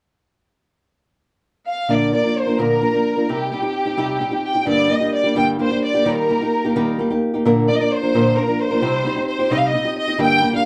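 A rich, focused chamber violin section carries a bowed, vibrato-laden melody from 1.7 seconds, joined at 1.9 seconds by a small, fingerpicked nylon-string guitar accompaniment in this proud, romantic mariachi excerpt in Bb major, moving in a straight 6/8 at 86 BPM through Bb, Cm, Gm and Eb chords, with both parts up front yet set in a small room that sounds as if heard from further back.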